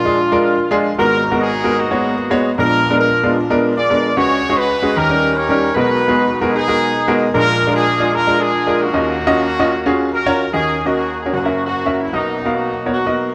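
A horn section and a baby grand piano begin together in this short gospel passage cut from a longer piece, setting a solemn, soulful mood over a swung four-beat feel. The horns carry the melody as a jazz-style ensemble, their soft attack, light vibrato and smooth top touched with tape echo and placed up front. The piano accompanies from deep bass notes into its upper register, sounding worn and intimate, with its action noise audible close up. The harmony leans on rich seventh and ninth chords, moving from Bb7 and Abm9 through Db7sus4 and Eb7. Around 10.5 seconds it turns toward Ebm7, Gb7 and Bmaj7 until both parts stop at 13.3 seconds. A moderate plate reverb gives the pair a long, glowing tail.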